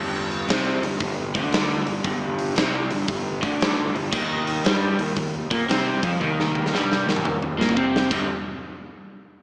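Bathed in a lush hall reverb with a big arena sound yet a small-speaker edge, this gritty, smoky blues rock and southern rock power-trio excerpt swings at 115 BPM in G minor, as a crunchy, picked, double-tracked overdriven guitar riff with spring reverb and slapback echo moves through G5 and Eb5 back to G5 over a growly, finger-played fuzz bass, while an up-front acoustic arena kit with a punchy kick and medium-tuned snare enters at 0.3 s and plays a drum fill from 6.2 s before the chords stop at 8.3 s.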